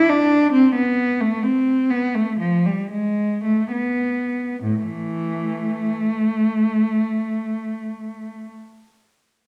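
A wet recital-hall reverb surrounds a warm, focused solo cello, bowed with vibrato and a smooth top and sitting up front, in this short excerpt from a solemn, introspective baroque-style suite movement in A minor and 12/8, played with rubato at 63-91 BPM in dotted quarters, slowing down through its first 4.6 seconds before moving into a new section that runs to 8.2 seconds.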